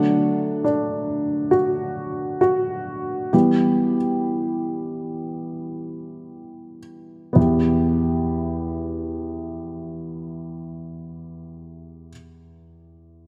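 A moderate scoring-stage reverb with a two-second tail surrounds a dark upright piano placed up front, its woody, slightly detuned tone carrying audible action noise and a vintage, intimate character. This short, slow pop piece in E minor, cut from a longer work, sits at 55-70 BPM in a straight 4/4 and feels longing and melancholic. The piano plays an accompaniment role throughout, ranging from E2 to G4, moving from a D chord to E minor at 3.3 seconds. The opening passage slows down as the piano plays alone, and a new section begins at 7.4 seconds. The smooth, mellow playing continues until the recording ends at 13.3 seconds.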